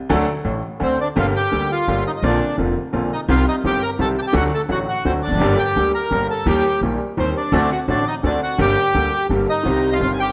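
This short excerpt of a dramatic, sultry tango opens at 0.1 seconds with a bright grand piano and a pizzicato upright bass together, the piano sitting up front in a brilliant, natural tone while the bass gives a woody, thumpy low end. At 0.8 seconds the bandoneon enters with the melody, its reedy, full voice close-miked, dry and placed up front. The music is in G minor at 170 BPM in 3/4, played with a rubato feel, and moves through a dark progression from D to G minor, B-flat add nine, C minor, E-flat and D7 before settling on C minor near the close. The piano ranges from F1 to A4 in its accompaniment, while the melody reaches up to B-flat 5. A large studio reverb with a 1.3-second decay lends the recording a roomy, dramatic space.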